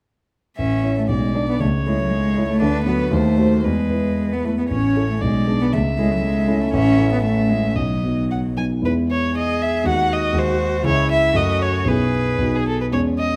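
At 0.6 s a piano trio launches into a cheerful, lively fragment of a quick classical-period movement in two with a supple rubato, where a focused, richly vibrato-laden solo violin carries the melody, a single cello adds a second line with light vibrato, soft attacks and an airy bow until 12.7 s, and an up-front concert grand with deep bass supplies the accompaniment, all caught by close, detailed microphones in a recital hall with moderate reverb.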